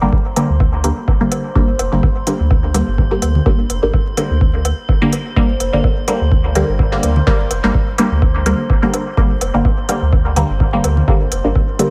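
A swung 126 BPM 4/4 groove drives this hazy, hypnotic dub techno excerpt in G minor, where an up-front, tape-warm kick and smooth layered hi-hats anchor a muted, detuned chord stab soaked in phaser and dub echo, a round sine sub bass pumping under tube saturation, overdriven woodblock and congas sitting in the background, and an eerie, warbling metallic FM drone hovering high over a bed of vinyl crackle.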